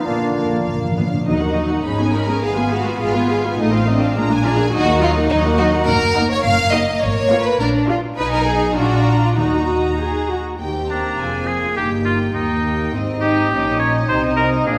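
A bright, up-front oboe emerges at 10.9 s with a second line, just after this stormy, dramatic classical-period movement turns from Eb minor to Eb major at 10.6 s. At a quick 103 BPM in 2/4 with a rubato feel, a clear, floating violin section carries the melody while a rich, intimate second violin section sings beneath it. A soft-edged viola section fills in the accompaniment, and dark cello and double bass sections hold down the bass, all of these strings bowed sul tasto. The opening moments bring brief touches from a pure flute, a mellow clarinet, a distant bassoon and a roomy trumpet stab. Timpani struck with hard mallets play an articulate fill at the start and return later, and a warm French horn section sounds briefly at first, then comes back with sustained chords through the major-key close. The minor passage leans on diminished and dominant seventh harmonies before resolving into brighter major chords, and the whole orchestra sits in a wet scoring-stage reverb.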